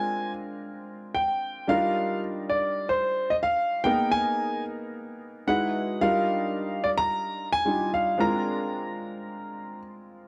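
Two pianos open together at 0.0 s in this short pop excerpt, a grand carrying the melody between C5 and Bb5 over a baby grand that supplies accompaniment from G3 to B4. The mood is urban and glossy, set at 111 BPM in a straight 4/4 in Eb major, tuned to A4 = 438 Hz. The melody piano sits a touch louder, with long sustain and a slapback echo. The accompanying baby grand carries an analog chorus. Both instruments sound warm, intimate and natural, placed up front with audible action noise. The harmony moves from Bb7 through Ebmaj9, Abmadd9 and a brief Emaj9 before returning to Ebmaj9 and Bb7, all in a dry, close 1970s-style studio sound with light reverb and small room ambience; the melody stops at 9.8 s and the accompaniment rings on to 10.3 s.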